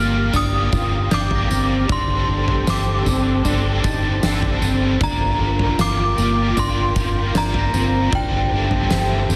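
Haunting and ethereal, this brief dream pop excerpt drifts in a straight 4/4 over a Gm7 to D7sus4/G progression, led by an inharmonic FM synth chime melody with ensemble chorus and digital delay, alongside a silky, slow-attack string machine pad swirling with phaser. A bright, overdriven picked electric guitar with tremolo and analog chorus and a dark, clean fingered guitar playing delayed arpeggios fill the middle, anchored by a round, foam-muted bass holding G1. An oversized, low-tuned kit with a fat snare, punchy kick, tambourine and toms enters at 0.3 seconds, gritty and saturated in a stone room, while a dry, bell-like glockenspiel with soft plastic mallets sits in the background from 1.1 to 8.7 seconds, all under a dense, heavily limited master.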